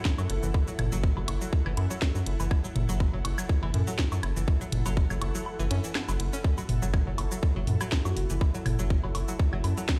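Hypnotic and quirky, this minimal techno excerpt runs at 122 BPM in 4/4 with a light swing on the sixteenths, sitting on a single F#m7 chord in F# minor. A tight, overdriven electronic kick sits up front alongside an overdriven garage kit of cracking snare, hi-hat and cabasa, while tape-warm electronic woodblock and toms carry a tape echo, and the kick drops out between 5.5 and 6.4 seconds. A rubbery, hollow square bass with a filter pluck bounces between F#1 and F#2, pumping under the sidechain, and a twangy, string-like resonator pluck plays the riff through chorus, cassette tape colour and delay. Beneath them a cloudy granular pad drifts with its own reverb and sidechain pumping, joined at 7.1 seconds by a very quiet, swarming, detuned drone on E4, and a round, keys-like FM lead strikes a single brief F#4 at 8.1 seconds with chorus, phaser and tape echo. The whole mix carries a light reverb and the stony ring of a big sound system playing in a bare room.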